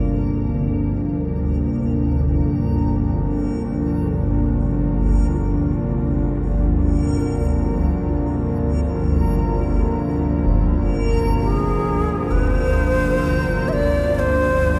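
A cavernous, dark ambient drone opens at once, cut from a longer piece, with a swarming, detuned sine drone sitting low and up front beside a sweeping pad of resonant sawtooth chords, its filter swell and chorus lending it a bright, evolving sheen. Alongside them, a reversed, dreamy triangle texture fades in over the full 14.8 seconds, quiet and granular, its shimmer reverb adding a faint halo. A concert bass drum, close, dry and low-pass filtered, sounds from 10.5 to 12.5 seconds, and it too fades in. At 11.4 seconds a breathy, reedy shakuhachi enters up front with vibrato and lifted highs, its bamboo tone trailing into shimmer reverb and diffuse ambient delay. The whole is tuned slightly below standard pitch and set in a vast cathedral reverb that keeps the free-time mood cavernous and echoing.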